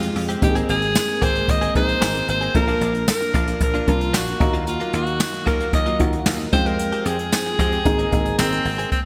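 A bright, glossy 1980s-style digital production wraps this short excerpt in a lush hall reverb with a touch of small-room ambience, giving an uplifting pop mood at 113 BPM in a straight 4/4, in Ab major. Up front, a breathy, edgy alto saxophone carries the melody with scooped notes, sitting over a dark, intimate baby grand piano whose audible action noise and short sustain are treated with a subtle chorus. A dry, punchy thumbed slap bass with a foam-muted bite anchors the low end, while a jazz brush drum kit, airy and polished with a boomy kick, tambourine and hi-hat, sits prominently in the mix. Further back, a clean, compressed, scooped-sounding electric guitar recorded direct plays a riff through analog chorus, and a very quiet, silky string machine holds sustained chords with a slow attack and long release. The harmony moves from Abadd9 through Bb, Ebmadd9 and Fmadd9 before returning to Abadd9 at 7.9 seconds, with all parts playing throughout the roughly 9 seconds.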